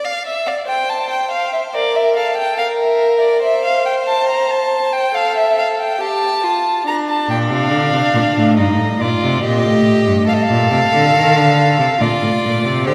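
A stately 70 BPM in straight 4/4 carries this joyful, baroque-style fugue for string quartet in Bb major, cut from a longer piece. A rich, even violin opens the second line at 0.0 seconds, joined at 0.5 seconds by a warm, expressive violin carrying the melody up front with vibrato, a soft attack and portamento. A clear, smooth cello enters at 7.3 seconds with the bass, all bathed in a wet church reverb.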